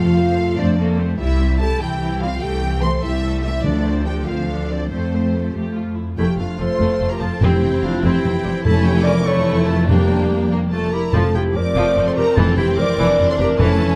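A moderate scoring-stage reverb gives this excerpt from a heroic adventure film score a soaring, triumphant sweep, moving in a straight 6/8 at 97 dotted-quarter beats per minute and settling into F major from 6.2 s. A symphonic violin section carries the melody with expressive vibrato and a soft attack, backed by a distant, even second violin section and an airy flute section with lifted highs that drops out at 5.5 s. Violas fill the middle with bowed accompaniment, while a tight, mellow French horn section and close-miked trombones hold sustained chords. Up front, a rich double bass section anchors the low end alongside background cellos. Timpani struck with hard mallets on calf heads mark a brief hit at 3.6 s and return from 7.4 s, as a roomy solo clarinet joins with a second line from 6.2 s.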